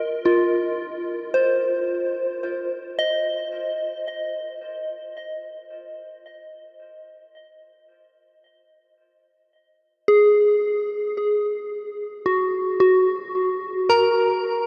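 Ambient excerpt, serene and unhurried in a straight, slow pulse, where a lone soft FM synth bell sits up front with pure, gentle tones that strike quickly and then fade, shimmering through chorus, phaser and tape echo inside a huge, wet reverb as the harmony drifts from Cm to an open, chordless stretch near 5.7 seconds and settles on Gbadd9 at 10.1 seconds.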